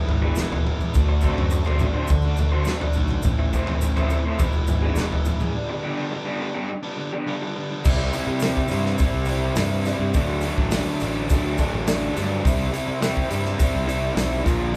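Wistful, jangly indie rock in C lydian at 104 BPM, cut from a longer piece, where a bright, compressed fuzz guitar riff and a lo-fi, overdriven garage guitar riff ride over a growly, punchy fuzz bass in the background, an up-front acoustic drum kit with a tight kick and rolled-off top, and a grainy, close shaker, all played live in one large room with moderate reverb, with a break from 5.5 to 7.8 seconds before the second section moves through C and D chords.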